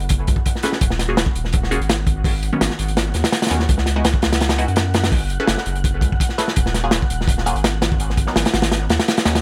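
A crunchy, gritty breakbeat kit with a punchy kick and medium-tuned snare sits up front from the start, joined at once by a thick, saturated sine sub bass and muted, detuned sawtooth-and-square chord stabs carrying phaser and dub echo, all in a dark, nostalgic drum and bass and jungle groove at 167 BPM. The stabs move through F#m11, D#madd11, G#m11 and C#sus4, while an airy, breathy wind-like noise texture on F#5 hangs in the background with its own reverb. This 9.4-second cut from a longer piece keeps the drums smooth with a rolled-off top, set in a small room.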